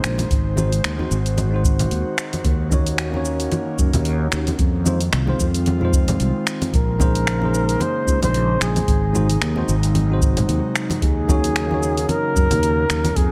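A mellow, whispered flugelhorn with vibrato and scooped notes takes the melody at 6.7 seconds in this relaxed, smooth sunset chillout excerpt at 112 BPM, swung on the sixteenths and moving through chords such as Ab7, Ebm7 and Bbm11. Beneath it, a growly fretless electric bass with lush chorus sits up front, while a bell-like tine electric piano with delay and an airy, breathy pad with chorus hold the harmony. A deep, dry electronic kick and a tape-warm R&B kit of cabasa, finger snaps and warm hi-hat drive the groove with studio reverb, and ringing congas played with soft hands sit in the background.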